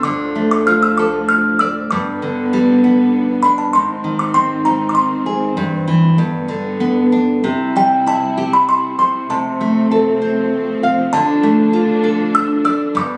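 Captured on a phone in a room awash in studio reverb, this sleepy, gentle lullaby excerpt in a rubato three-four sways as a delicate, tinkling music box carries the melody up front with plate reverb, a deep classical fingerpicked nylon-string guitar supports it up front, and a dark, sul tasto string section holds soft-attacked sustained chords with light vibrato underneath.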